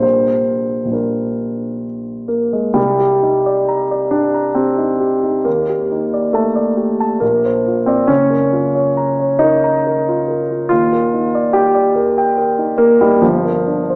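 Heard through worn, warbling old cassette tape with a small-speaker sound, faint mains hum and a wet concert-hall reverb, this fragment from a longer piece presents an impressionist classical solo for a warm, up-front grand piano spanning Gb1 to Bb5. The mood is dreamy and luminous, moving in a rubato 3/4 at roughly 64-73 BPM. After a brief opening on Bb6, the second section begins at 2.8 seconds with lush harmonies drifting through Cm9, Ebmaj7#11, Gbmaj7 and Ebmaj7 before settling on Gm7 at 13.2 seconds.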